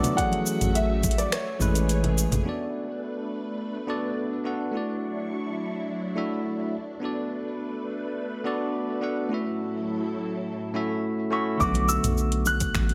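Smooth and wistful, this sunset chillout excerpt in B dorian moves at 105 BPM, with a bell-like, barky tine electric piano carrying the accompaniment throughout under tape echo, a silky string machine holding chords through phaser and ensemble chorus, and a mellow, worn grand piano adding brief melody lines. A deep house kit of metallic hi-hats, cabasa, finger snaps and toms and very quiet congas play from the start until 2.4 seconds, joined by a deep electronic kick from 0.2 to 1.2 seconds and a round analog bass from 0.6 seconds. The kit, kick and bass return at 11.6 seconds, and the congas follow at 11.7 seconds.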